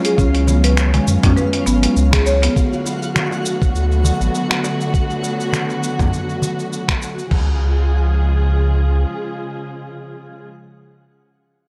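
Organic downtempo at 101 BPM in C# phrygian dominant, hypnotic and earthy, a short cut from a longer piece where dark, lush bowed strings hold pumping chords while a woody marimba arpeggiates briefly through an analog delay, two gritty, tape-toned sampler-style drum kits supply snaps, hi-hat, shaker, toms, crash and a thumpy up-front kick, a round sine sub bass with transformer saturation pumps beneath, a small clay darbuka sits in the background, and a twinkling granular shimmer sparkles faintly behind, with a band accent at 2.1 seconds and the harmony moving from C#7sus4 to D6 at 2.6 seconds before landing on C# at 7.3 seconds in a dry, gritty mix.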